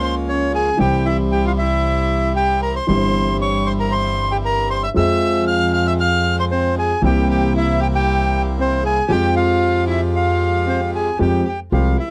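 The recording has a dry, close 1970s studio sound with little reverb, and this 12-second fragment of a passionate, sultry tango moves at 115 BPM in 4/4 with a rubato feel, in F harmonic minor tuned to A4 = 444 Hz. A reedy, bright bandoneon sits up front carrying the melody, while a rich, smooth violin, a single bowed player with vibrato and an even tone, weaves a second line below it. A clear concert grand piano with deep bass and a natural tone supplies the accompaniment, joined by a woody pizzicato upright bass strung with steel. In the background, a second bandoneon, dark, full and close-miked, adds stabs until 11.1 s. The harmony passes from Bbm/Db through C, Fm and C7 before settling on Fmadd9 at 9.1 s, with piano and bass stopping at 11.9 s.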